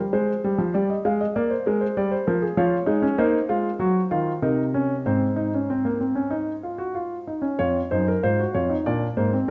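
Stately and joyful, this baroque-style three-part fugue in Db major moves at a straight 96 BPM in 4/4 as a solo concert grand piano, placed up front with deep bass and short sustain, spans F2 to F5 through chords such as Fm, Bb and Ebm before a new section begins at 7.6 s, heard in a dark production with moderate recital hall reverb and cut from a longer piece.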